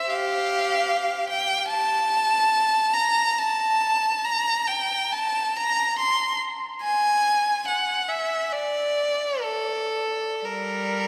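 A long cathedral reverb, heard from further back in the room, surrounds this short classical fragment cut from a longer piece for unaccompanied violin. A single bowed violin, close and up front with a clear, focused tone and vibrato, plays alone from 0.0 to 11.1 seconds, ranging from G3 to C6. Its rubato phrasing in 4/4 gives the music a free, expressive, yearning and mournful character.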